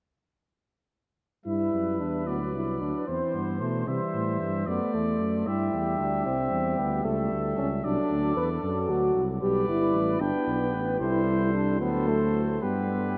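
A vast, echoing cathedral reverb surrounds this stately, triumphant classical brass quintet, a passage cut from a longer piece in G major, moving in 6/8 at 75 BPM counted in dotted quarters. All five parts sound together from 1.5 s to 13.2 s: a vintage trumpet carries the melody, a mellow flugelhorn with vibrato adds a distant second line, and a roomy French horn supplies accompaniment alongside a soft-attacked, close-miked trombone that sits in the background. Up front, a dark tuba with light vibrato and a smooth top anchors the bass beneath harmonies that pass through C/E, D and A7/C# before settling from D7 onto G.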